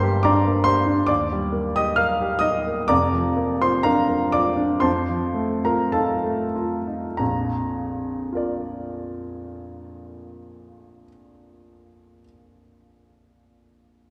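A warm, present baby grand piano carries this hopeful, lyrical romantic character piece alone, in Bb major at 46-72 BPM with a free rubato feel, spanning F1 to F6. Through the opening 7.2 seconds the pace slows as the harmony moves from Gm through Eb, Bb/F and F7 before settling on Bb, where a new passage begins and runs to 11.9 seconds. The piano's tone sits up front, yet the wet recital hall reverb places the listener further back in the room, giving this fragment of a longer piece a spacious glow.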